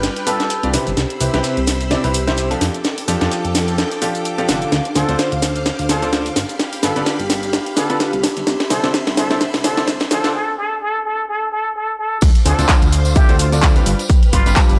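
Bittersweet and soulful, this piano house cut in D dorian swings at 128 BPM, with a bright, worn baby grand riff, a fat sawtooth analog bass, a shimmering vintage string machine on violins and a warbling lo-fi tape-like pad all pumping against the sidechain over a gritty, dry hardware sound. A breathy plunger-muted trumpet sings a distant, jazz-style solo with wah-wah, scooped notes and analog delay, while an overdriven house kit with a cracking snare and handclaps sits up front over a very quiet, damped 70s kit with a fat snare, moving through a drum fill and a break. At 12.2 seconds the drop lands as a punchy, overdriven electronic kick and a tambourine in the background join over the Dm7 and G7 chords.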